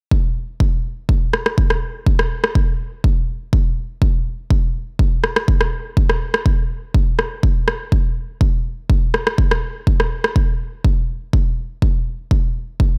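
An electronic kick drum opens this afro house excerpt, punchy and overdriven, sitting up front in a straight 4/4 pulse with an earthy, spiritual mood. At 1.3 seconds a layered, produced rim click joins, also overdriven and carrying a touch of studio reverb like the kick, before it drops out at 10.3 seconds. The overall sound is dry and close, leaving the kick to carry the groove alone until the cut.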